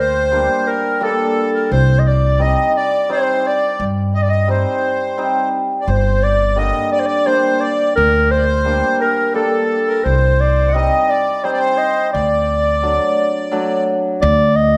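A bittersweet, festive klezmer piece in three opens with all four players together: a classical-style clarinet carries the melody up front, a reedy, airy accordion with light tremolo tuning sings a sweet second line, a hammered, shimmering cimbalom rings out the accompaniment, and a woody, pizzicato upright bass on steel strings anchors the low end up front. The harmony sways between minor chords before turning to a D chord near the close, all within a moderate recital-hall reverb. The accordion drops out at 13.8 seconds and the cimbalom at 14.3 seconds, leaving clarinet and bass to sound until 14.8 seconds in this brief passage cut from a longer piece.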